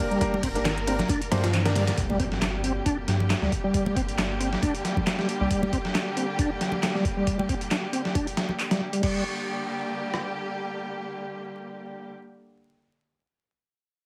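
Breakbeat cut from a longer piece, gritty and funky in G minor at 136 BPM with a light swing, built on an up-front, overdriven soul sampler-style kit with a thumpy kick and medium-tuned snare, layered with a house kit's metallic hats, handclaps and ride, plus hard-handed congas in the background and a thick, saturated sub bass that drops out at 5.5 seconds. A reedy tonewheel organ riff with key click, fast rotary speaker and chorus vibrato carries a filter sweep from 2.0 seconds, while polished baby grand stabs open the drop and an electronic impact lands behind it. Smooth, bowed strings hold sustained chords from the opening Gm onward with sampler grit and sidechain pumping, all under a heavily compressed radio sound with vinyl crackle and a moderate room reverb.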